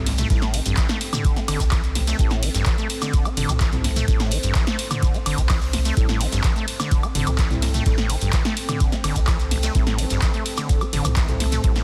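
Acid house with a trippy, driving mood, cut from a longer piece, where an overdriven electronic kick and a punchy analog drum machine of handclaps, hats, ride, snare, toms and woodblock stand over a very quiet acoustic drum kit and a grainy shekere, while a round sine sub bass and a squelchy, resonant sawtooth acid riff with tape echo pump under a detuned, wave-folded chord stab and a moody, warbling ambient pad that sit dark and quiet in a dense, heavily limited mix.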